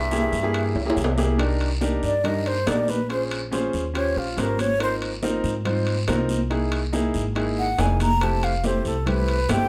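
Driving and sultry, this Afro-Cuban jazz excerpt moves at 141 BPM in C minor, with a buzzy muted trombone sounding briefly in the background before falling away at 1.2 seconds. A breathy, mellow concert flute with vibrato and a crisp attack takes a slightly unsteady solo from 1.4 seconds. Underneath, a woody, thumpy pizzicato upright bass and an intimate grand piano with audible action noise sit up front, while soft-handed, high-tuned congas, ringing metal-shell timbales and a raspy guiro fill out the groove under light reverb.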